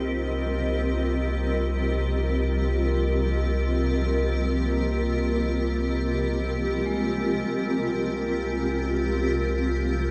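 A bright, blurred granular cloud pad sits up front in this reflective, spacious ambient excerpt in free time, holding detuned sustained chords with its own built-in reverb over a deep, round sub bass on C2, while a metallic, ringing vibraphone with medium mallets and slow motor vibrato plays arpeggios in the background through a diffuse delay, fading in across the full 10.1 seconds as the harmony moves from F7(no3)/C to Bb13/C at 7.5 seconds, the mix set in a huge, wet reverb with a cassette tape character.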